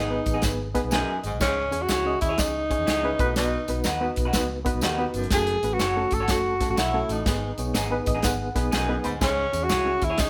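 Urgent and driving, this short cut from a longer uptempo 1960s-style soul piece swings at 123 BPM over G#m, C#m, B and F#m chords. A breathy, up-front tenor saxophone carries the melody with vibrato and scooped notes, while a bright, barky electric piano with light overdrive and fast tremolo accompanies and adds a fill at 7.8 seconds. A slightly broken-up, lo-fi guitar plays stabs over a dark, round muted bass, a warm soul drum kit with a tight kick and a jingly tambourine in the background, with a distant, subtoned baritone saxophone riff entering at 0.9 seconds, all played live together in a stone room with moderate reverb.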